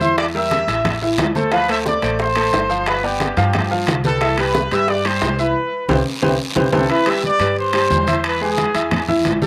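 A straight 4/4 salsa pulse at 178 BPM in C major drives this sunny, joyful passage, with a tight, up-front trumpet section carrying the melody with vibrato over a brilliant, intimate upright piano whose action noise is audible, a dark, thumpy pizzicato upright bass, soft-handed, low-tuned congas in the background, a raspy, close guiro, high-tuned vintage bongos that stop at 6.8 s, and ringing metal-shell timbales with a slapback echo, as the band hits an accent from 5.6 s while a drum fill leads into a return of the opening section at 6.9 s.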